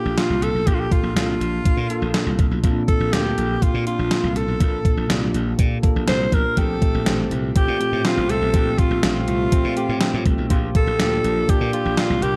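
A gated 80s digital drum machine drives a straight 4/4 at 122 BPM, its thumpy kick and overdriven, gated-reverb snare sitting up front, while a growly, glassy slap bass and a bell-like tine electric piano with analog chorus fill out this glossy, nostalgic 1980s-style pop excerpt in Bb major. Over them, a breathy, raspy alto saxophone carries the melody with vibrato and digital delay, moving from Bbmaj7 to Fadd9 at 6.6 s, where a clean, compressed electric guitar riff with subtle chorus enters in the background, before settling on Gm7/Bb at 10.5 s. A moderate plate reverb wraps the dark production.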